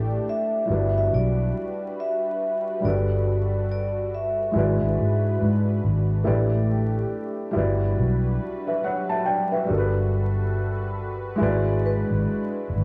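A round, foam-muted electric bass sits up front in this melancholic, reflective lo-fi hip hop excerpt at 70 BPM with a swung 4/4 feel, joined by a dark, woody upright piano and a smooth, detuned sawtooth pad with chorus and a slow attack. A mellow vibraphone played with soft mallets carries the ringing, metallic melody through a low-pass filter and analog delay, its slow motor vibrato heard until 5.4 seconds before it briefly returns at 11.9 seconds. The jazzy chords cycle from A7sus4 through Em9/G, Gmaj9 and E9/G#, all framed by a gritty hardware sound, vinyl crackle and light studio reverb.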